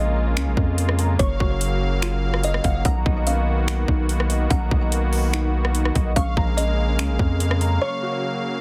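A half-time trap groove at 145 BPM in 4/4 sets a blissful, floating mood in this atmospheric cloud-rap fragment in B lydian, cut from a longer piece. The electronic trap kit enters at 0.4 seconds with finger snaps, metallic hi-hats, rim clicks and a hard-clipped kick, all overdriven and placed up front. Beneath it, a deep, sine-toned 808-style bass with a fast attack holds long, decaying notes until 7.8 seconds, when a short break begins. A pipe organ with shimmering celeste string stops pumps against the sidechain as it sustains soft, romantic chords moving through A#m7, F#maj7 and Bmaj7. In the background, a woody, thumb-plucked kalimba melody sits behind a low-pass filter and digital delay, while a clean, fingered electric guitar plays dark arpeggios through ensemble chorus, low-pass filtering and delay. The dry, dense, heavily limited master keeps the sound close and full.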